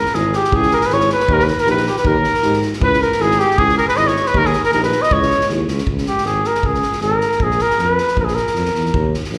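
A mellow, punchy trumpet and an edgy alto saxophone second line in the background open this restless, bittersweet Balkan brass band excerpt at 157 BPM in a swung 2/4, joined by a dark, soft-edged euphonium and a very quiet French horn as accompaniment, a tuba bass, and a distant, roomy acoustic drum kit of kick and snare played with bundle sticks; the saxophone, euphonium and horn, the first two sharing the trumpet's slapback echo, drop away around 5.5 seconds, and from 5.9 seconds the up-front trumpet solos over tuba and drums, heard through a venue's PA with light recital hall reverb.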